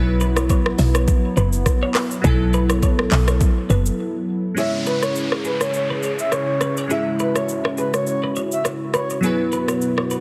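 Afrobeats at 103 BPM in C# minor, this hypnotic, mellow excerpt moves with a gently swung sixteenth-note feel over a Bsus4 chord that shifts to C#m. An overdriven, electronic afro-pop kit sits up front, with a knocking kick, warm hats, handclaps, rim clicks and shaker. Beside it, a woody, punchy log drum bass with a percussive FM bite carries the low end until 3.9 seconds. Glassy digital keys with chorus and a filter sweep provide the accompaniment, while a hollow, airy pad holds detuned, slowly blooming chords beneath. A clean, twangy twelve-string electric guitar plays a quiet picked riff through analog chorus and digital delay. After a short break, a breathy flute-like synth lead with tremolo, vibrato and delay takes the melody from 4.6 seconds, joined by an electronic downlifter, all within a heavily compressed, radio-like sound with light reverb.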